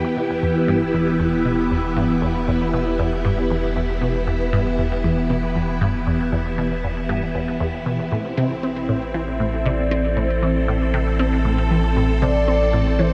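Ambient, sequencer-driven space music in E minor at 117 BPM in a straight 4/4, this short excerpt from a longer piece feels cosmic and expansive. A bright, up-front string machine holds sustained chords throughout, its vintage sawtooth tone swirling through ensemble chorus and phaser with a slow attack and long release. Beneath it, a juicy, squelchy blip pluck repeats a resonant filtered riff, its detuned pulse and sawtooth voices given a moving notch, phaser, subtle chorus and delay. A round, deep analog bass anchors the low end with a dark triangle-and-sine tone. At 8.6 seconds an expressive portamento lead enters with a smooth, warbling, wave-folded voice, carrying a melody colored by vibrato, analog chorus and delay. The harmony moves from Em to Am at 8.1 seconds, and a huge ambient reverb with a 9.4-second decay lends the whole a vast, spacious depth.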